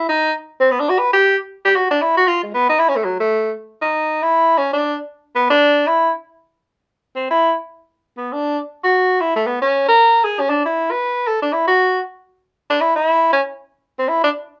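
A warm, vintage-toned tenor saxophone with vibrato plays alone and up front in a club-sized room, carrying a playful, relaxed, swinging jazz line in D major at 233 BPM through two sections, the second beginning at 6.9 seconds, in this brief cut from a longer piece.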